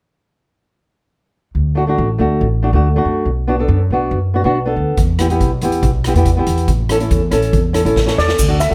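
This festive, carefree calypso excerpt in D major opens at 1.5 seconds with a woody, growly pizzicato upright bass, quickly joined by a thumb-plucked flamenco guitar playing a warm accompaniment at 140 BPM in a straight 4/4. Both sit up front as the harmony moves through D, B minor, E minor and A. At 5.0 seconds, an airy street-band drum kit enters with a boomy kick, a medium-tuned snare, rim clicks, hi-hat and dark cymbals. A drum fill then ushers in a mellow, shimmering steel pan lead at 8.2 seconds, played with soft rubber sticks. A grainy tube shaker joins just after, and light reverb gives the whole a touch of space before the clip ends.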